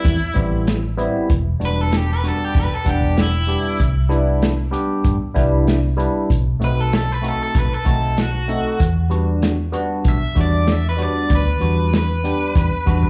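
Brooding and smoky, this straight-eighth soul blues excerpt in E minor moves at 96 BPM, with a biting overdriven guitar carrying the melody through spring reverb and slapback echo over a barky, up-front tine electric piano colored by overdrive and phaser, a muffled, dry soul drum kit with a tight kick, and a dark, round muted fingered bass entering at 0.1 seconds, all heard as a live club gig through the venue's PA while the chords pass from Am7 and Em7 through Cmaj7 and B7b9 back to Em7.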